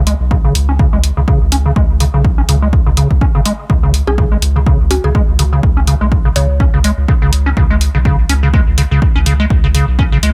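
A swung 16th-note groove in 4/4 drives this trippy acid house excerpt, with a punchy analog kick and electronic hi-hat that were re-recorded in a small room. Up front, a squelchy, hollow square-wave acid bass riff sweeps its resonant filter throughout, thickened by tube saturation, lush chorus and tape echo, while the round analog bass sits deep and dark beneath it with sidechain pumping. From 4.1 to 6.8 seconds, a mallet-like synth pluck adds a woody, mellow melody through chorus, phaser and delay, all in a fairly dry mix.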